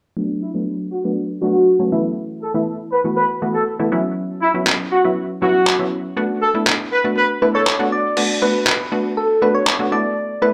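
Dance-pop with a confident, energetic drive, heard as a live gig through the venue's PA with a wet club reverb, cut from a longer piece. A round, sawtooth-based analog pluck carries the accompaniment from 0.2 s, bright and up front with a noise layer, ring modulation, chorus and a slapback echo, while a filter sweep runs beneath the opening stretch. A horn section with light vibrato and a smooth top states the melody from 0.4 s, colored by tape echo. An overdriven, detuned 8-bit drum machine joins at 4.7 s with crash cymbal and handclaps, its sampler-style hits sounding re-recorded in a small room. Around 7.4 s a soft, keys-like FM lead with vibrato takes over the melody in a higher register, gentle and chorused, carrying through the shift in harmony from Bm7 to Asus2 at the close.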